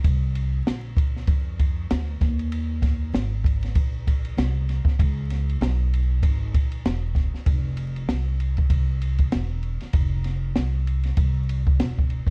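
An up-front open jazz drum kit, with a boomy kick, dusky cymbals and a medium-tuned snare, roughened by vintage 12-bit sampler grit in a small room, drives this mellow, nocturnal jazz-hop cut from a longer piece at 97 BPM in 4/4 with a 58% sixteenth-note swing, joined throughout by a woody pizzicato upright bass on steel strings, the whole set in a dark, dry production laced with vinyl crackle.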